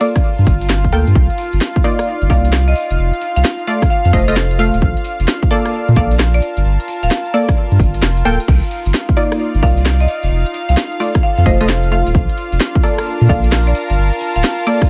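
With light reverb and a saturated, up-front low end, this moody, bouncy two-step UK garage excerpt at 131 BPM in C dorian swings over a Gm9–Cm11–F7–Bbmaj7 cycle as a woody, bright marimba carries the melody through digital delay, a smooth analog pad and punchy, nasal detuned chord stabs with chorus fill out the harmony, crisp hats, a cracking snare, rim clicks, crash and a jingly tambourine drive the groove, a deep, thick sub bass enters at 0.4 seconds beneath a layered electronic kick that briefly drops out at 8.0 seconds, and an intimate bowed chamber string section fades in from the background with the pad's sidechain pumping.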